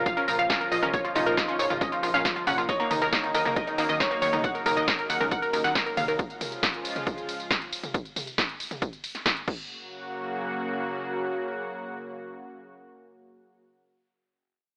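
This euphoric, soaring excerpt of uplifting trance in F# major opens straight into a drop at 137 BPM in a straight 4/4. A punchy, detuned unison pluck carries the up-front melody with dub echo and sidechain pumping. A brilliant, worn grand piano sits in the background on a second line with its own dub echo, while a higher, bright unison pluck adds a ring-modulated second line, also in the background. Beneath them, a very quiet, wave-folded unison pluck plays arpeggios with dub echo, and a funky, sawtooth-and-square analog bass with a moving notch pumps against a tape-warm, punchy electronic kick. A layered big-room drum kit with crisp hats, a punchy snare, crash, ride, tambourine and toms drives the section over chords moving from A#m through D#m7 to C#. The lead, piano and bass stop by 6.2 seconds and the drums by 9.6 seconds, leaving a thick, chorused unison pad with vintage 12-bit sampler grit to sustain an F# chord until 13.6 seconds, all heard through an AM-radio tone with light reverb.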